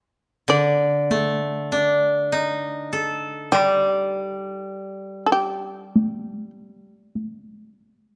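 Japanese chamber music in a calm, austere mood, this short excerpt drifts freely around 50 BPM in 4/4, as an up-front, buzzing, plectrum-plucked shamisen carries the melody over a bright, woody koto played with fingerpicks, while a close taiko ensemble struck with heavy sticks enters at 1.1 s, and a moderate recital-hall reverb surrounds the trio.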